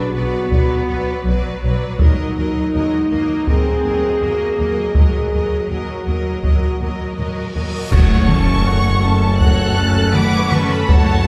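Dark and dramatic, this epic orchestral film-score passage moves at 81 BPM in F# minor. Lush bowed violin sections carry the melody and a second line over a smooth viola bed, mellow distant French horns, an intense cello section and rich double basses, while hard-stick taiko drums boom from a large room and bright cymbals with concert bass drum join at 5.0 s. A faint, huge reverse cymbal leads into a band accent and impact at 7.9 s, where a clear tuba enters in the background on the F#m arrival, all heard from further back in a wet scoring-stage reverb with some lossy compression artefacts.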